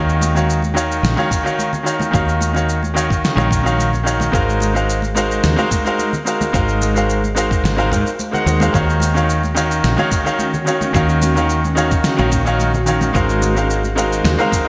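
A straight 4/4 groove of gritty, thumpy electronic kick from 1.3 seconds, fat layered snare and shaker with gated reverb, and ringing congas and bongos in the background carries this wistful, smooth sunset chillout excerpt, where a brilliant, up-front baby grand piano with digital delay plays over a round, woody fretless bass across Ebm7 and Ab13 chords, and an ethereal, detuned pad with ensemble chorus joins at 10.1 seconds, all within a bright 1980s-style digital production bathed in plate reverb.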